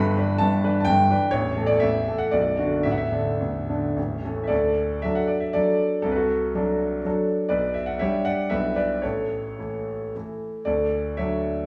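Classical romantic triple-time dance in D major, rustic and graceful, with a solo baby grand piano whose clear, intimate tone, long sustain and audible action noise sit up front in a wet stone room as it plays dotted rhythms with rubato at 101-134 BPM in 3/4, moving into a new section at 4.5 s before this short cut from a longer piece comes to rest on D at 10.7 s.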